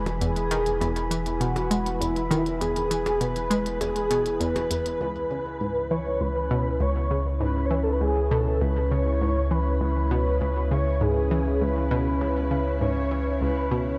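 A spacious concert-hall reverb with a long 2.4-second tail surrounds this cut from a longer piece of ambient, sequencer-driven space music, moving at 100 BPM in a straight 4/4 with a cosmic, mysterious mood. A deep, round sine sub bass sits up front beneath an evolving wavetable pad whose detuned, morphing unison voices hold sustained chords with a slow attack and long release, shaded by chorus and its own reverb. A breathy, flute-like synth lead carries the melody with a soft attack and vibrato, thickened by ensemble chorus and tape echo. An analog pluck plays a riff with a fast attack and short decay, its bright sawtooth and square tones colored by ring modulation, a filter sweep, chorus and tape echo. Clicky electronic hi-hats and percussion blips, re-recorded in a small room, tick along only until 5.0 s, when the harmony moves from E to C#m7 and the second section begins.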